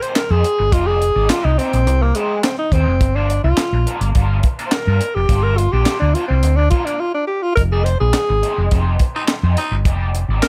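Funk at 105 BPM in 4/4 with a straight feel, this driving, hypnotic passage in F dorian is cut from a longer piece. A breathy alto saxophone carries the melody up front throughout, playing a clear, jazz-style solo with vibrato and a soft subtone, and the passage reaches a brief break at 7.0 seconds. Beneath it, a tight, dry acoustic drum kit with a high-tuned snare, tight kick, hi-hat and handclaps sits close, while a hollow-body short-scale electric bass, fingered and amped with a dark, round tone, joins at 0.3 seconds. A bright, overdriven garage guitar, picked and coloured by wah and spring reverb, supplies accompaniment further back in the mix as the harmony moves from Fm9 to Gm7 and back to Fm9. Near the close, at 9.2 seconds, a raspy, gritty baritone saxophone adds a short second line on a single note, sounding distant and roomy, all within a small room ambience.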